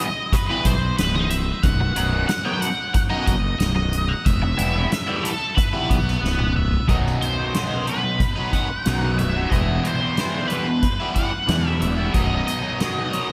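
An octave-fuzz lead guitar carries the melody up front, its distorted, picked tone run through wah and a diffuse ambient delay, in this dark, trippy stretch of psychedelic rock at 91 BPM in straight 4/4. A double-tracked, overdriven stack guitar with phaser holds down the riff, a round, dark fuzz bass enters at 0.7 s, and a soft-mallet acoustic kit with a boomy kick and medium-tuned snare plays a fill from 6.2 to 6.9 s as the harmony moves between Em and B. The dreamy mix is soaked in a moderate cathedral reverb.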